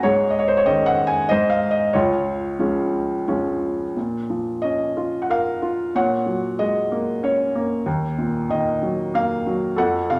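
A felt-muted upright piano, intimate and up front with a short, mellow sustain, plays a sunny, hopeful classical solo in a lyrical, rubato 3/4 that shifts into a new section at 4.0 s, set in a moderate scoring-stage reverb in this fragment cut from a longer piece.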